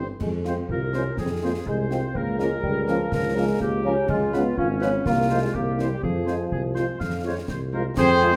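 Heavy studio reverb fills the space around this short cut from a longer military-style march for wind band, set in F minor at 124 BPM in a straight 2/4, with a martial, resolute mood. A bright trumpet section carries the melody with light vibrato. Beneath it, a dark, distant French horn section sits in the background, and a very quiet, mellow trombone section holds sustained chords. Up front, a warm, roomy tuba anchors the bass with a soft attack. At 0.2 s a solo euphonium, also soft in attack, adds a second line, and the clash cymbals, concert bass drum and concert snare drum come in close and dry, with dark cymbals. From 0.7 s a tight woodwind section with a smooth top adds another second line, as the harmony moves from Fm through Bbm/Db and Db7 to C7 before settling back on Fm.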